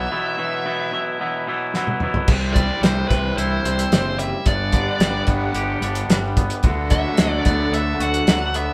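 Indie rock at 110 BPM with a moody, cool air, this short excerpt opens on a dark, distorted bluesy lead guitar melody over a clean, twangy electric guitar riff and a fuzzy, picked bass, before a cloth-damped, thuddy drum kit with a fat snare and dark cymbals enters on a fill at 1.7 seconds, and at 2.3 seconds a bright, raw garage guitar riff and a very quiet, phased vintage string-machine cello pad join as the chords move from C to G to D6, all captured as a band playing live in one small room.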